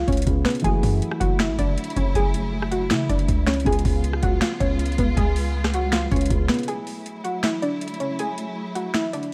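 Melancholic and brooding, this short cut from a longer trap-flavoured hip hop track moves with a half-time feel. A warbling, lo-fi pluck carries the melody up front, its detuned, chorused tone darkened by a low-pass filter and trailed by digital delay. Beneath it, a mellow concert grand piano sits in the background with audible action noise and a boxy character, while a punchy, heavy 808-style bass hits hard and decays. The dry, tape-toned drum machine comes in just after the opening and stays up front to the end, with a deep kick, crisp snare, metallic hi-hats, rim clicks and finger snaps, and a lush, bowed string section with vibrato enters at 0.6 seconds to hold sustained chords. The bass drops out at 6.5 seconds and the piano follows at 6.7 seconds, opening a break that leaves the pluck, drums and strings over a bed of vinyl crackle in a nearly reverb-free sound.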